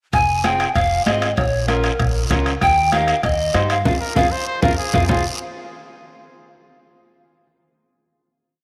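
An airy, up-front pan flute with vibrato and slapback echo carries the motif-based melody of this short, danceable and passionate cumbia in F minor at 194 BPM, over woody pizzicato upright bass, a vintage soft-beater bombo, raspy guiro, very quiet ringing timbales, background congas and a slightly broken-up electric guitar picking rhythmic triads. A clear, punchy trumpet joins at 4.0 s with answering phrases in the melody's rests, while a band accent at 3.9 s and a drum fill at 4.2 s lead into the final chord under a plate reverb.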